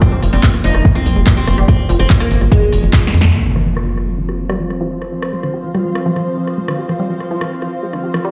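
Hypnotic and psychedelic, this psychedelic trance excerpt in F minor moves at 144 BPM, with a bright, woody fretless oud carrying the melody over a morphing, detuned wavetable pad, a lush detuned unison pluck riff with cassette tape colour, a heavy up-front electronic kick and a dark, driving sawtooth sequencer bass, while the oud, pad and pluck pump together. A techno kit adds punchy snare, handclaps, rim clicks, hi-hats and crash under low-pass filtering, and a drum fill leads into an up-front electronic impact at 3.4 seconds, where the kick, bass and oud have dropped away and a filter sweep on the drums begins. From 4.2 seconds a blurred, cloudy granular pad drifts in high above, all within a large, reverberant room sound.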